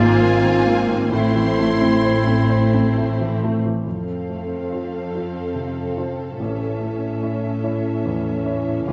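Hopeful and moving, this rubato cinematic fragment in 6/8 carries its melody on a woody, dark violin section over a second violin line with a smooth top, a soft-attack clarinet that stops at 3.4 s, a polished baby grand piano, even violas, distant cellos and background double basses that fall away at 3.6 s, before a roomy French horn section enters at 3.8 s with sustained chords, the whole set in a moderate concert hall reverb.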